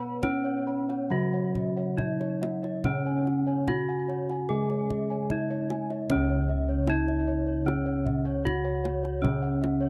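Serene and shimmering, this short excerpt from a longer Javanese gamelan piece moves at a steady 66-77 BPM in 4/4 with a straight feel, set in C# slendro. A bronze metallophone struck with a horn mallet carries the melody, its bright, ringing tone close-miked, dry and up front, with a touch of tape echo trailing behind it. Beneath it, a lower metallophone played with a wooden mallet supplies accompaniment. Higher up, another wooden-mallet metallophone in paired tuning spins arpeggios alongside a set of bossed gongs, whose round, bright strokes add beating overtones. A lower set of bossed gongs, mid-forward in the mix, anchors the bass, while a tight, dry kendang drum enters at 0.2 seconds to keep time. The close, dry studio sound carries a faint sense of 1970s recording, light reverb and some lossy compression artefacts, and the passage shifts into a new section at 6.1 seconds.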